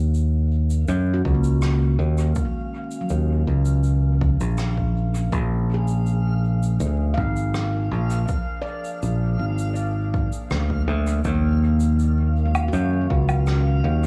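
Ambient dub in Eb minor at 81 BPM, this hazy, deep passage is cut from a longer piece and moves through Ebm7, Bb7 and back to Ebm7 in a straight 4/4. Up front sits a growly, bright fingered electric bass with tube saturation, its direct tone dominating a mix heavy with echo, vinyl crackle and small room ambience. Beneath it, a very quiet, warbling tape-like pad holds mellow, nostalgic chords with a lo-fi chorus shimmer, while a reversed, detuned texture swells dreamily on a high F5 from 0.5 seconds. Distant, roomy shaker, rim click and woodblock are thrown into dub echo, and a handpan with a ringing, stainless-steel voice enters at 1.1 seconds with soft, meditative arpeggios that also trail into echo. A punchy, overdriven electronic kick arrives at 1.3 seconds and drops out at 13.3 seconds, anchoring the hazy groove.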